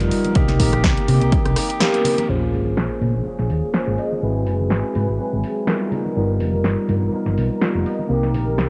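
A swung groove drives this nostalgic, funky filtered disco house clip, with an overdriven, punchy electronic kick briefly in front and a house kit of punchy snare, rim click and bright hats, plus very quiet, distant tambourine and congas. A dark, round hollow-body bass sits up front beneath a clean tine electric piano with phaser and sampler grit, and a twangy, scooped electric guitar riff, all pumping through a filter sweep, with the keys and guitar wrapped in cassette haze. At 2.3 s a sub drop and a lush sawtooth string machine arrive in the background, joined at 4.0 s by a fat, warbling, detuned synth brass melody with vibrato.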